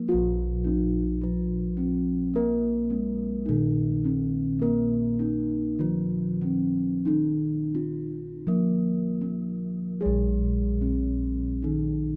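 A straight 4/4 pulse moving between 74 and 106 BPM carries this serene, ceremonial gamelan excerpt in Bb slendro, where a ringing bronze metallophone struck with padded disc mallets sings the melody up front, a second soft, mellow metallophone plays the accompaniment beneath it, and round, beating bossed gongs anchor the bass, all three sounding from the start until 12.2 seconds in a vast, echoing space with a long reverb tail.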